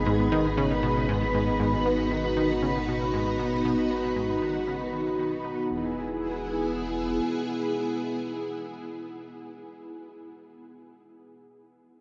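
Expansive and luminous, this short cut from a longer piece of ambient, sequencer-driven space music moves in a straight 4/4. A lush, vintage string machine sits up front, holding sustained sawtooth chords with a sub octave and ensemble chorus, shifting from G#m to E at 5.7 seconds. Beneath it, a round sine sub bass anchors the low end until 7.2 seconds, while a punchy, funky analog bass riff with a filter pluck and tape echo runs until 5.9 seconds, both basses fading out across the opening stretch. A bubbling, resonant texture of random filter steps adds a mellow glow high above, softened by chorus and its own built-in reverb. The mix is bathed in a huge, wet reverb and the worn, warbling pitch drift of old cassette tape, with a dull, rolled-off top end.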